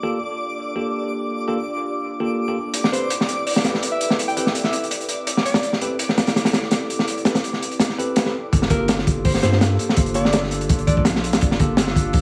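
A crunchy breakbeat drum kit sits up front in this nostalgic, frenetic drum and bass and jungle cut, arriving at 2.7 seconds with a punchy kick, a high-tuned snare and hi-hat, its saturated, gritty tone rolled off on top in a small, dark room. The piece moves at 166 BPM in 4/4 with a light swing on the sixteenths, in G dorian, as the chords shift from Gm9 to Am9 and back to Gm9. Beneath, a warbly tape-like pad holds detuned, lo-fi chords with chorus deep in the background, while a bell-like tine electric piano plays clean stabs through a low-pass filter and dub echo. A twinkling granular texture adds sparkling, octave-up shimmer high above until the drop. A clear alto saxophone with jazz-style vibrato drifts in behind the mix for two short solo phrases, also carried on dub echo. At 8.5 seconds the drop brings in a deep, thick sub bass with a sine-like body and fast attack, and the cut from a longer piece is framed by light studio reverb.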